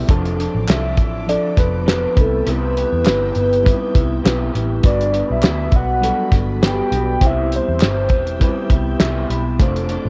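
A lightly swung groove from a cloth-damped, thuddy drum kit, with a fat snare and gritty sampler texture up front, drives this laid-back, dreamy bedroom-pop excerpt alongside a round, foam-muted picked bass and crisp background handclaps. A slightly broken-up guitar with lush chorus and vibrato, a reedy, worn electric piano with fast tremolo, and an organ-like ensemble string pad with phaser fill out the chords as they move from F6 through Cmaj7 and Gmaj7. A soft, dark, octave-layered synth lead carries the melody from 0.7 to 8.7 s before the electric piano adds a short fill at 8.7 s, and the mix sits in light reverb with a home-recorded cassette character.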